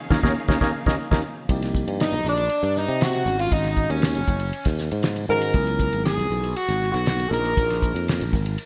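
A breathy alto saxophone carries the melody from 2.0 s, its mellow subtone and scooped notes sitting distant and roomy in a jazz-style solo, joined by a biting, overdriven, double-tracked electric guitar with digital delay playing a second line. This is an intense, driving electric jazz fusion piece in C phrygian at 118 BPM in a straight 4/4, cut from a longer work. It opens with a band accent over a lush, bowed string section whose vibrato and portamento color the sustained chords until 1.5 s, and the harmony moves from Eb9sus4 to Cm11, Ab7sus4, Dbm7 and Bb7sus4. Up front, a growly, punchy fretless electric bass pairs with a damped 70s drum kit of dark cymbals, fat snare and tight kick, the kit dry but touched by gated reverb. A clean tine electric piano with phaser adds accompaniment in the background. The bright 1980s-style digital production places everything in a small room ambience with moderate plate reverb.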